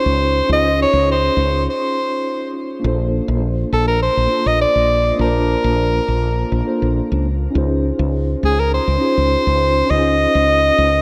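A clear soprano saxophone with light vibrato carries the up-front melody through shimmer reverb and tape echo, over a mellow tine electric piano bathed in its own shimmer and a woody, round, punchy fretless electric bass, in this sunny, smooth sunset chillout piece at 102 BPM, cut from a longer work, where a break at 1.7 seconds leads to a shift from Dbmaj9 to Bbmaj9 at 2.8 seconds, inside a lush hall reverb.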